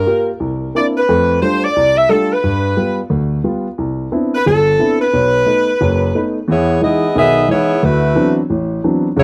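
Dry, close small-room sound in a 1970s studio manner frames this brassy, joyful swing-jazz fragment, where a clear saxophone section with light vibrato carries the melody up front over warm grand piano chords of short sustain, moving through rich harmonies like C9 and Cmaj9 before turning toward Emaj7 at 6.5 seconds and then D13.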